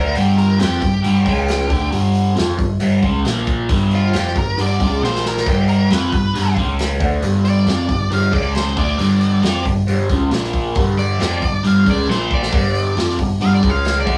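A crunchy, double-tracked overdriven guitar riff with a phaser opens this swaggering, gritty blues rock and southern rock power-trio passage, sitting up front alongside a round, dark hollow-body bass picked low and an octave-fuzz lead guitar carrying the melody. A vintage acoustic drum kit joins at 0.2 seconds, with a punchy kick, medium-tuned snare and hi-hat, its top end rolled off and its sound mid-forward. The straight 4/4 groove moves at 136 BPM over power chords that circle around G5, stepping to C#5 and Bb5 before returning home. Drum fills at 5.0 and 12.1 seconds land on the shifts to Bb5. The whole thing has the rough feel of a rehearsal-room take, with tube saturation and a short, wet small-room reverb. This is a brief passage cut from a longer piece.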